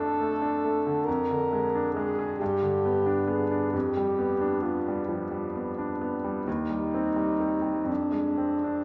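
A clear French horn carries the melody in this brief, melancholic fragment of a romantic classical duo, its soft attack giving the line an elegiac, distant quality even as it sits up front. A bright grand piano accompanies throughout, brilliant and intimate, with audible action noise and long sustain lending the chords a polished presence. Both instruments play together from the start to the end at 8.8 seconds, moving in 6/8 with a freely breathing rubato. The harmony moves from D minor through a diminished color, settling on G and G7 before turning toward a minor chord near 6.5 seconds and closing on a half-diminished sound. A recital hall reverb wraps the pair in a roomy wash, and the production is dark and warm overall, giving the performance a somber, intimate feel.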